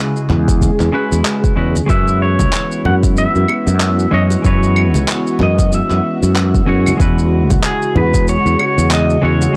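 A semi-hollow electric guitar, clean and compressed with analog delay, opens this sunny, relaxed sunset chillout excerpt in E major alongside a soft string machine whose silky, dark sustained chords carry an ensemble chorus. At 94 BPM in 4/4 with a gentle 16th-note swing, the groove forms around a deep electronic kick, tape-warm electronic shaker, handclaps and claves, and ringing congas and bongos set close and dry in the background. A sustaining fretless electric bass sits up front, growly and punchy with a subtle chorus. At 1.9 seconds a twangy pedal steel guitar enters with the melody, played with fingerpicks and slide, using volume swells and analog delay as the harmony moves from E69 to F#7sus4 before returning to E69 at 7.0 seconds. The mix is dry and gritty, with transformer saturation and a cassette-tape character giving the sound its grain.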